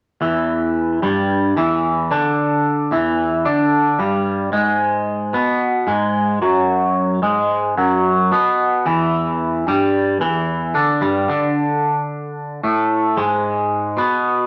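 Trippy and kaleidoscopic, this rock excerpt moves at 111 BPM in a straight 4/4, with a lone twangy electric guitar playing from 0.2 to 14.5 seconds, its clean, scooped, fingered tone sitting up front and colored by a phaser. The harmony shifts from Em7 to G#m7, back to Em7, and lands on G#m at 13.2 seconds. The sound is a rough rehearsal-room recording with moderate stone-room reverb.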